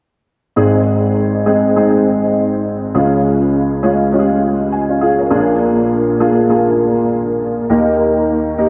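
A warm upright piano opens at 0.6 seconds, carrying this brief, uplifting pop passage in Ab major at 101 BPM with a gentle sixteenth-note swing in 4/4. The piano sits up front with a woody, polished tone and long sustain, spanning a broad register from deep bass notes to high upper tones, with an ensemble chorus lending it a shimmering fullness. Around 4.4 seconds it slips in a short fill before the harmony moves on. The chords travel from Ab to Db, then Bb7, settling on Eb, which gives the music a hopeful, lifting sense of motion. A lush plate reverb soaks the whole mix, leaving a dreamy, spacious halo around the playing until it ends at 8.7 seconds.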